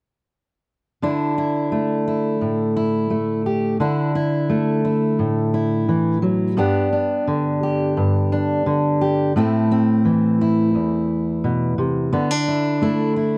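Folk excerpt at 86 BPM in a straight 4/4, with a warm, nostalgic mood carried by a lone fingerpicked steel-string acoustic guitar. The dark-toned dreadnought sits up front in a dry, close 1970s-style studio sound with light reverb, moving from Dsus2 through G and Am before returning to Dsus2 at 12.1 seconds.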